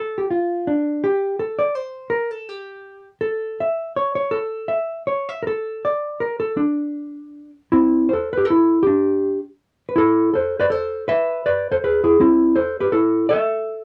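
Whirling, bittersweet musette in a lightly swung 3/4 at 162 BPM, cut from a longer piece, in which a dark, clean, fingered electric hollow-body jazz guitar plays solo and up front from 0.0 to 13.8 seconds, moving from D minor to A minor at 7.7 seconds with touches of E, all heard through a modest booth ambience and the warbling pitch drift of worn old cassette tape.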